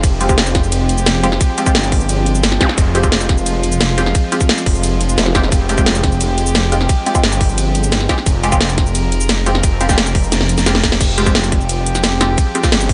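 A thick, detuned saw bass sits up front on a low F, its chorused tone pumping against a tight, layered electronic kick in this dark, futuristic drum and bass excerpt at 175 BPM in F minor. A cracking snare, metallic hats, ride, crash and cabasa drive the aggressive groove, while a muted, deep dub chord stab with phaser and delay and a distant chamber string section floating on sustained chords fill out the dry mix. A saturated formant-sweep wobble bass bursts in at 5.2 seconds, a background swell and zap sound at the start and near 2.6 seconds, and a drum fill at 10.3 seconds leads to a band accent at 10.9 seconds.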